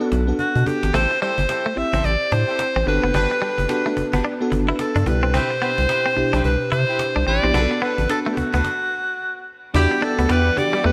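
A bright alto saxophone carries the melody up front in this slick, confident new jack swing excerpt, its pop-style tone shaded with light vibrato, a breathy subtone and a touch of delay. Underneath, a round, deep analog bass sits prominently, while an FM electric piano layered with a soft pad fills out the harmony with a lush, dreamy, chorused sound. A snappy, compressed cajon keeps the 109 BPM swung groove in the background, opening with a quick fill, and at 0.9 seconds a twangy, clean direct-recorded electric guitar riff and a roomy, distant jazz-style horn section playing stabs join in. The A dorian progression moves through minor and major seventh chords before a stop at 8.6 seconds, after which a veiled, muted string section enters at 9.7 seconds with soft sustained chords over an Em9. A moderate hall reverb and bright 1980s-style digital production give the whole a polished sheen.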